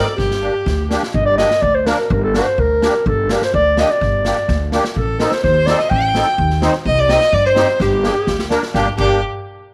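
Bittersweet and soulful, this brief klezmer excerpt in G minor moves at 126 BPM in a straight 2/4, with a dark, roomy clarinet singing the melody up front over a reedy, shimmering musette accordion, a woody, thumpy pizzicato upright bass and a street-band drum kit with a boomy kick whose fills open the piece at 0.2 seconds, while a bright, intense bowed violin with vibrato and slapback echo adds a second line that returns at 5.0 seconds, all set in a moderate spring reverb as the chords pass from Gm through Adim and Cm back to Gm.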